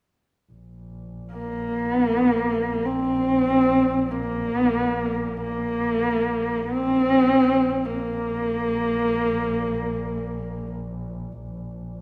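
A low, distant double bass enters at 0.5 s, holding a warm bowed drone on Bb1 that sits far beneath the rest of the texture and carries through to 12.0 s. At 1.3 s a dark, husky horsehead fiddle comes in up front, a single player bowing horsehair strings in a narrow range between Bb3 and C4, shaping an expressive melody with vibrato and portamento. This is Mongolian folk music in free time, tuned slightly high to A4 = 441 Hz, and its mood is proud and galloping. The bass, also bowed by one player, colours its drone with the same vibrato and sliding expression, while the fiddle falls silent at 10.8 s. A moderate scoring-stage reverb with a 1.8-second tail surrounds the pair, and lossy compression artefacts mark this short passage cut from a longer piece.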